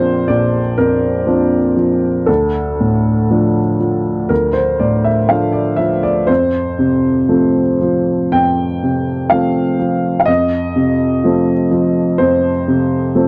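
Neoclassical minimalist piano in F major, tender and hopeful, unfolding at a slow, rubato 56-64 BPM in 4/4 in this short cut from a longer piece. A solo upright piano with a woody, smooth, vintage tone and long sustain sits up front, ranging from Bb1 to G5 as it moves from Bbadd9 to Dm at 2.3 seconds and settles on F at 6.3 seconds. The sound is dry and close, like a 1970s-style studio recording, touched with light reverb.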